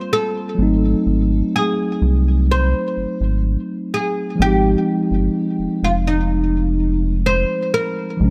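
Romantic and smooth, this short contemporary R&B excerpt at 63 BPM sets a woody, plectrum-plucked oud melody with delay over a mellow tine electric piano and, from 0.6 seconds, a rubbery, hollow square bass with a resonant filter pluck, all in a dry, close sound moving from a rootless Eb69 through Ab7b9 to Fm9.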